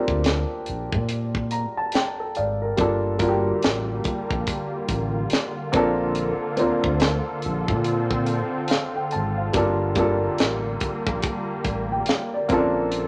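The recording sits in a moderate large studio reverb with a dulled top end and a faint mains hum, giving this short cut from a longer neo-soul R&B piece a late-night, introspective mood. A dark, mellow baby grand piano with short sustain sits up front, playing accompaniment from the start and adding a fill from 1.1 to 2.8 seconds over a slow, swung sway between Bbmaj7 and Gm7. Underneath, a smooth gliding synth bass blends sawtooth and triangle tones, sustaining with vibrato and portamento. A tight funk drum kit, acoustic and mid-forward with a high-tuned snare, a tight kick and hi-hat, also sits close in the mix. At 3.4 seconds a warm analog pad enters with slow-attack sustained chords, its detuned sawtooth and chorus lending a warbling, vintage haze.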